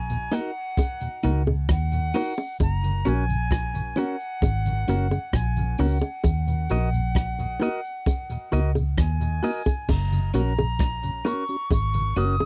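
Roots reggae at a laid-back 66 BPM in F# major, this uplifting excerpt moves between D#m and F# chords, with a pure, straight-toned concert flute carrying the melody through tape echo above a dark, round, foam-muted bass sitting up front. A gritty, saturated breakbeat kit with a tight kick and dark cymbals pairs with high-tuned, close bongos, while a twangy, compressed clean guitar, also with tape echo, fills in the harmony and a soft tonewheel organ with key click, chorus vibrato and slow rotary speaker sits in the background. The dry, close 1970s-style studio sound carries light reverb, and a new section arrives at 9.9 seconds.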